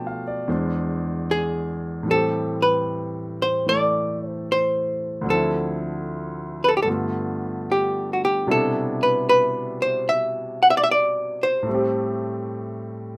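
Jazz ballad at 75 BPM in 4/4 with a gentle swing, intimate and tender in mood, cut from a longer piece. A clean, hollow-body archtop guitar carries the melody up front, picked with an electric tone, while a natural-sounding grand piano accompanies through E7b13, Am7, Dm7, G9 and Cmaj7 before returning to Am7 at 11.7 seconds. Light reverb gives the pair a close, softly lit space.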